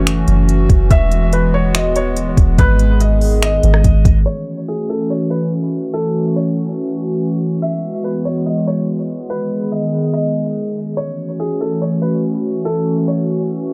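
Hazy and spacious, this atmospheric cloud-rap fragment at 143 BPM in a half-time feel in F# dorian pairs a felt-muted upright piano melody, low-passed and touched with digital delay, over a hollow, flute-like pad pumping with chorus through F#m7, Eadd9 and G#m, while a round, deep 808-style bass and a smooth R&B kit of finger snaps, hi-hat, soft kick and rim click sit up front until dropping out at 4.3 seconds, leaving piano and pad in a dry, dark mix.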